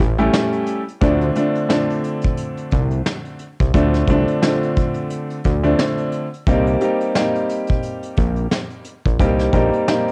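A swung 88 BPM groove in 4/4 opens this gritty, tough boom-bap hip-hop excerpt in D phrygian, carried by a vintage kit played with brushes: a tight kick, a medium-tuned snare and hi-hat, all dark and smooth with a rolled-off top. A fat analog bass sits up front with a thick, detuned sawtooth tone, fast attack and sustained notes, its evolving sound shaped by a filter sweep. An upright piano joins at 0.2 seconds as accompaniment, woody and intimate with audible action noise, its vintage character narrowed by high- and low-pass filtering and cassette tape coloring. The harmony moves from A7 to Dm7 at 1.0 seconds, then to Cm7 at 6.5 seconds. Light reverb and a small room ambience give the home cassette recording a close, lived-in feel, and the passage is cut from a longer piece.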